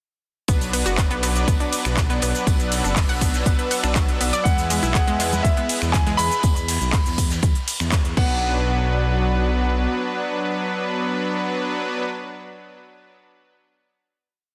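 A four-on-the-floor electronic kick drives this dreamy, bittersweet progressive house piece at 121 BPM in B dorian. Around it sit a crisp programmed kit of hats, claps, snaps, cabasa, ride and crash, a gritty looped breakbeat from an oversized low-tuned kit in the background, and a brief, very quiet conga loop. A dark, rumbling detuned saw bass plays a dotted rhythm up front, while round analog pluck arpeggios with delay, soft supersaw stabs roughened by 12-bit sampler grit, and a mellow chorused pad each pump against the kick over Bm and E chords. A concert grand piano enters at 4.4 seconds with hook phrases carried by delay, and the drop gives way to a final hit at 8.4 seconds, where the pad, supersaw and piano ring on to 12.0 seconds.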